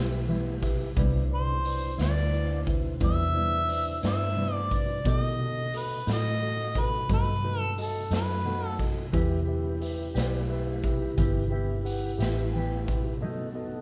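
Slow, soulful and smoky blues in 12/8, where an overdriven harmonica carries a scooped, lightly vibrato jazz-style solo up front from 1.3 to 8.9 s over a gritty, boomy garage drum kit entering at 0.6 s, a dark, foam-muted fingered bass, a clean tine electric piano through a combo amp, a background tremolo electric guitar and a flute-like tonewheel organ turning on a slow rotary speaker, all played together in one lightly reverberant room.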